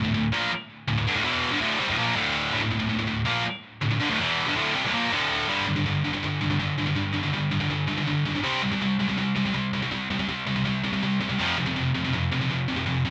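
Metal in D minor at 163 BPM, this short cut from a longer piece carries a relentless, epic mood in a straight 4/4 pulse. A single high-gain distorted electric guitar plays alone throughout, picked and double-tracked, sitting up front with a bright, saturated edge. Its part spans from D2 up to C4, opening on a D minor chord before moving at 5.5 seconds into a passage of power chords on G, then C, then F. The sound is a rough home demo mix, set in a small room with a moderate reverb that lends a sense of space around the guitar.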